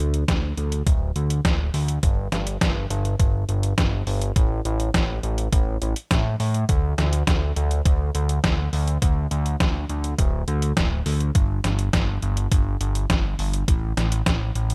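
A fat, thick analog bass opens this short synthwave excerpt, sitting up front with a detuned blend of sawtooth and square waves, a fast attack and sustained notes that range from D1 to A2. A filter sweep and a moving notch keep its tone shifting throughout. The bass starts at 0.0 seconds, joined at 0.1 seconds by a detuned 8-bit digital drum machine playing hi-hat and a medium-tuned snare. The snare is sampler-style, overdriven and placed up front. At 0.3 seconds a thumpy electronic kick drum enters, also overdriven and carrying the character of a small room. At 103 BPM in a straight 4/4, the piece feels nostalgic and driving, held in one section with a dry, close sound.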